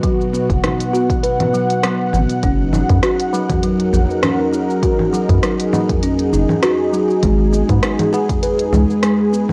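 A warm analog pad holds detuned sawtooth chords with chorus and sidechain pumping, while a buzzing, woody kalimba plays dry, close-miked arpeggios through tape echo, over a punchy layered kick and an electronic kit of smooth hats, cabasa, congas and rim clicks. This is an excerpt of hypnotic organic downtempo at 100 BPM with a light 16th-note swing, moving through B, F#6 and G#m. A deep, round bass enters at 0.5 seconds up front with a filter sweep, and a low-tuned, ringing tabla sits in the background from 2.9 seconds, the whole piece captured as a home cassette recording in a moderate room.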